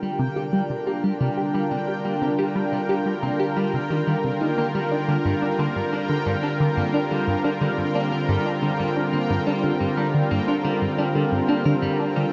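This short excerpt of ambient, sequencer-driven space music opens in a huge, wet reverberant space with a dark, warm production, setting a mysterious, cosmic mood in G minor at 89 BPM in a straight 4/4. Up front, a lush, thick unison pad of detuned sawtooth voices holds sustained chords with a slow attack and long release, its chorus adding shimmer as the harmony moves from C7(no3) to G minor at 4.9 seconds. Beneath it, a tight sequenced synth drives a nasal, plucky sawtooth riff with a moving notch, fast attack, chorus and tape echo, keeping a mellow edge. High above, a bubbling stepped-filter texture holds a bright, resonant G5, its random filter steps wrapped in its own reverb. In the background, a clean, compressed electric guitar picks dark arpeggios through tape echo, fading in across the whole 12.3 seconds.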